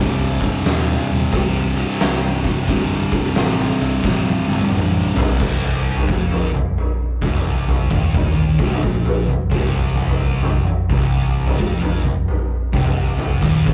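A rough rehearsal-room recording with tube saturation and a touch of light reverb gives this ominous, sludgy stoner and doom metal excerpt a raw feel, cut from a longer piece and swinging in 4/4. Three thick fuzz guitars grind out low riffs together: one dark and distorted, one sitting back in the mix, and a double-tracked warm layer, also in the background, that drops out at 5.4 seconds. Beneath them a fingered electric bass growls with bright, punchy overdrive, tucked into the background. An oversized, low-tuned acoustic drum kit sits up front in a bright stone room, its punchy kick, medium-tuned snare, toms, hi-hat and dark cymbals sounding gritty and saturated, and a drum fill from 4.0 seconds leads the riff from a power chord into a full C minor chord.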